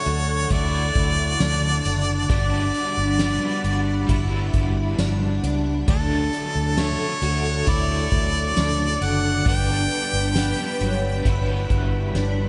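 A huge, dreamy wash of ambient reverb soaks this short cut from a longer dream pop piece, its dark top rolled off to leave an ethereal haze at a slow 67 BPM in 4/4 with a straight feel, in G lydian and shifting between D and Gmaj7. A clear, up-front harmonica carries the melody with light vibrato and scooped notes through tape echo, falling away at 11.2 seconds. Beneath it, a bright, octave-doubled twelve-string acoustic guitar picks shimmering arpeggios with audible finger squeak, while a vintage organ-like string ensemble holds soft-attack chords under a moving notch. An overdriven semi-hollow guitar sits in the background with tremolo and lush chorus, and a tiny celesta adds very quiet, bell-like sweetness high above. A round, punchy, foam-muted electric bass anchors the low end, and a soft-mallet drum kit with a fat snare, boomy kick, hi-hat and tambourine plays until a drum fill at 12.1 seconds.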